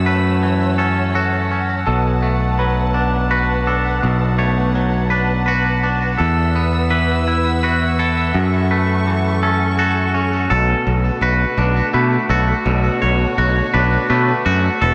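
A lush hall reverb gives this short cut from a longer post-rock piece a big arena sound, setting a cinematic, brooding mood at 56 BPM in a straight 6/8 in B minor. Two clean, twangy electric guitars play arpeggios through tape and slapback echo: a picked one sits up front in the lower register, while a fingered one rings higher. A bright, direct picked electric bass stands forward underneath, and a dark, distant chamber string section holds bowed, expressive sustained chords with vibrato across F#m7, Bm7 and Esus2, with a new section arriving on Bm7 at 10.5 seconds.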